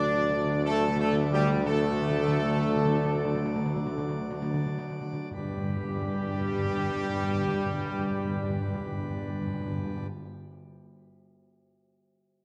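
Classical and solemn yet triumphant, this slow 3/4 passage in G major (43-64 BPM) is cut from a longer piece, with a dark, distant trumpet section carrying the melody over mellow French horns, a roomy trombone section and a full principal-chorus pipe organ holding sustained chords, a close-miked tuba with light vibrato anchoring the bass, and round, dry timpani on soft mallets playing a fill through the opening 5.3 seconds as the music slows, moving from a D chord to G at 5.3 seconds in a moderate scoring-stage reverb.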